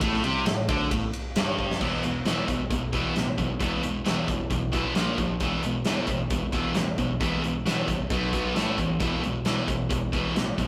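A straight, driving hard rock groove from a big, dark-toned acoustic drum kit with a fat snare and punchy kick, marked by a fill at 1.6 seconds, powers this menacing, heavy excerpt, as an up-front scooped high-gain guitar and a hollow-bodied overdriven semi-hollow guitar in the background grind out a low power-chord riff over a growly, very quiet picked electric bass, all captured as a rough rehearsal-room recording in a moderate stone room.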